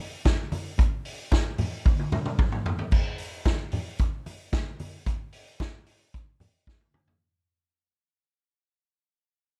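This sultry, driving disco cut from a longer piece is carried by an up-front vintage drum kit, with its punchy kick, medium-tuned snare, toms, hi-hat and dark crash cymbal, while low-tuned congas with a thick-skinned, soft-handed tone sit further back in the mix. The dry, dark production keeps the kit's top rolled off and its sound roomy, and a drum fill at 1.9 seconds leads into a fade-out that begins at 2.9 seconds and runs to the end, with a final fill at 6.7 seconds.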